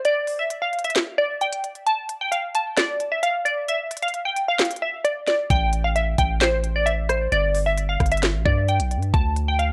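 A dry, gritty hardware sound with a digital ambience frames this menacing, brooding trap excerpt in A minor, moving at 132 BPM in 4/4 with a half-time feel. A glassy wavetable pluck carries the melody from 0.1 s, ranging from C5 to A5, its crystalline, detuned unison tone colored by chorus, ring modulation and a low-pass filter sweep. The up-front trap kit brings a knocking kick, sharp snare, crisp hi-hats, handclaps and rim clicks, all roughened by vintage 12-bit sampler grit. The opening plays as a break with the kick muted from 4.6 s, until a long, deep sine 808-style bass enters at 5.5 s, sustaining and decaying between G1 and G2. From there the harmony moves from Am7 to G5 to Dm before the fragment cuts off.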